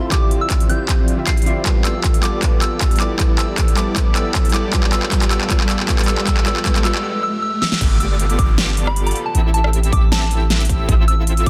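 Half-time future bass at 156 BPM in A minor, this bittersweet, dreamy excerpt builds over punchy kick, huge snare and crisp hats beneath a smooth detuned supersaw riff, a pure bell melody, a round dark pluck, a very quiet ethereal pad and faint risers, through chords moving from Dm11 to G9, then after a break at 7.0 s drops at 7.8 s into a deep, mellow 808-style bass and a bright, airy arpeggiated lead, all set in light digital ambience with a dense, heavily limited master.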